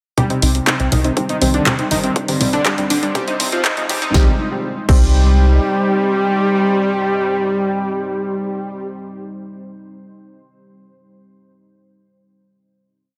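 A four-on-the-floor electronic kick and a house kit of snare backbeat, handclaps, hi-hats, congas and crash drive this dramatic, melancholic melodic techno piece at 121 BPM in C minor, alongside a round analog pluck cycling a 3-step loop that drifts against the bar. A tight, off-beat sequencer bass joins at 0.4 s. The drums and pluck stop around 5.0 s after a filter-swept build, and the bass follows at 5.6 s. Over this, a fat, wave-folded analog lead plays a repeating sixteenth-note riff over a pedal note with vibrato, doubled an octave lower by a smooth supersaw. A moody ambient pad sustains dark chords while muted, sparse dub chord stabs echo into an echo-heavy chamber reverb, with the lead, supersaw, pad and stabs ringing on to a final chord from 4.1 s.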